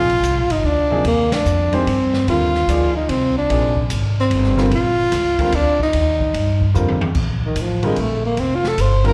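A breathy, subtone tenor saxophone with scooped notes and slapback echo carries the melody of this hypnotic, spiritual modal jazz excerpt in swung triple time, backed by an intimate, slightly detuned upright piano with audible action noise and its own slapback echo, a woody pizzicato upright bass up front, and an open acoustic drum kit with dark cymbals and a boomy kick that enters at 0.1 s and plays a fill at 6.8 s before the saxophone solo at 7.2 s, heard as a live gig through the venue's PA in recital-hall reverb.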